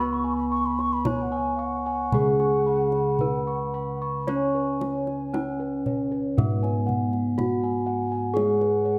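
Serene and ceremonial, this short Javanese gamelan passage in a straight 4/4 sets a ringing bronze metallophone, struck with a wooden mallet, forward on the melody, while an airy bamboo bansuri with expressive vibrato floats a second line above it. Beneath, a second metallophone played with padded disc mallets gives a mellow accompaniment, bright beating bossed gongs and a soft, background metallophone trace arpeggios, and round bossed gongs struck with padded beaters carry the bass. A tight, dry kendang played with soft hands enters at 0.8 seconds and stops at 8.7 seconds, and a recital-hall reverb lends the bronze a lingering glow.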